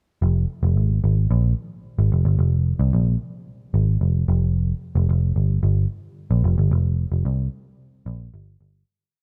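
A vintage muted picked electric bass carries this short early-eighties boogie funk piece entirely on its own, playing from 0.2 to 8.8 seconds. Its tone is dark, round and punchy, with a foam-muted, amped character that sits up front in the mix. The fat, syncopated boogie line moves between F1 and C2 in F minor at 111 BPM in a straight 4/4, giving the breakdown a slick, danceable feel. Light reverb surrounds the bass in a rough home demo mix, tuned slightly sharp at A4 = 441 Hz. A fade-out begins at 6.7 seconds and carries the piece to its close at 8.9 seconds.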